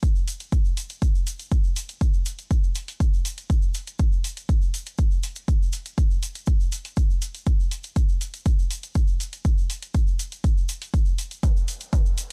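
A dark, warm production with little reverb frames this cinematic, driving techno excerpt at 121 BPM in a straight 4/4. An up-front, layered electronic kick with a punchy, tape-saturated character runs through to 12.0 seconds. Beneath it sit the analog drum machine's hi-hats and toms, re-recorded in a small room and high-pass filtered, and a grainy, mellow tube shaker, until a drum fill begins at 11.4 seconds.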